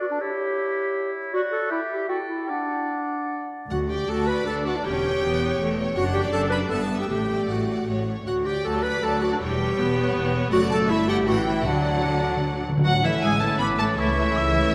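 Spirited and graceful, this brief excerpt from a quick classical-period orchestral movement in D major moves in a rubato 3/4 at roughly 146-166 BPM. Flute, oboe and a roomy clarinet open the passage together before bowed strings enter at 3.7 s: a violin section carries the expressive melody with vibrato and portamento over a second violin line, focused violas, lush cellos and close double basses, while hard-mallet timpani on calf heads punctuate the texture and play a fill from 11.7 s. Near the close, the flute and a soft-attack oboe return, and a mellow French horn section adds sustained chords in the background, all bathed in a wet concert-hall reverb.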